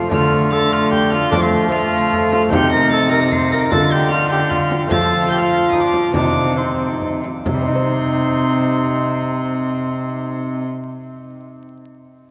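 Solemn and courtly, this excerpt of a renaissance-style consort dance moves in a stately triple metre with a straight feel. A bowed violin carries the melody high above the ensemble with light vibrato and a reedy gut-string tone, while a dark, smooth-topped cor anglais with a soft attack traces a second line beneath it. Up front, a rich single cello holds the bass, joined by a close-miked solo trombone and a mellow, fingerpicked lute whose delicate double gut strings sit in the background. A close, dry frame drum played with hard hands marks the dance until 7.7 s, and the pace slows between 4.3 and 7.5 seconds before a contrasting closing passage. The consort sits in a cathedral-like reverb with a long 4.8-second decay, and vinyl crackle gives the recording a period patina.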